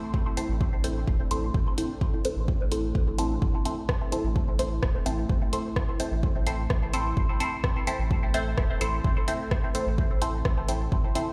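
A straight 4/4 pulse at 128 BPM drives this short dub techno excerpt in A minor, with an overdriven, deep electronic kick sitting up front from 0.1 seconds, joined at 0.4 seconds by a deep house kit of hi-hat and rim click that carries overdrive and dub echo. The mood is hypnotic and meditative, resting on a single Am chord throughout. A filtered dub chord stab, muted and detuned with a sub octave, moves between C4 and C5 through phaser and dub echo, its fast attack and short decay giving a mellow, evolving colour as it sits prominently in the mix. Beneath it, a round analog bass with a nasal, sine-like tone holds the low end between E1 and A1, pumping against the kick. In the background, a moody, full-bodied pad sustains chords from A3 to A4 with a slow attack, long release, chorus and its own reverb, breathing with sidechain pumping as well. The whole sounds as though played through a big sound system in a bare room with a large studio reverb, while the drums were re-recorded in a small space.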